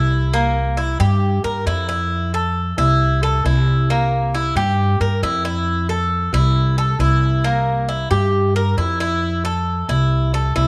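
A relaxed 4/4 groove at 135 BPM with a straight feel opens this short Cuban son and guajira excerpt in F major. A Cuban tres plays arpeggios throughout, its picked double strings giving a warm yet metallic tone, with some strings doubled at the octave. Beneath it, a pizzicato upright bass on gut strings supplies a woody, thumpy low end, dark in tone and placed up front alongside the tres. The harmony rocks steadily between C7 and Fmaj7, with the first C7 arriving at 0.3 seconds and the pair alternating through to the end. Light reverb and small room ambience lend the easygoing, warm mood an intimate, close-up sound.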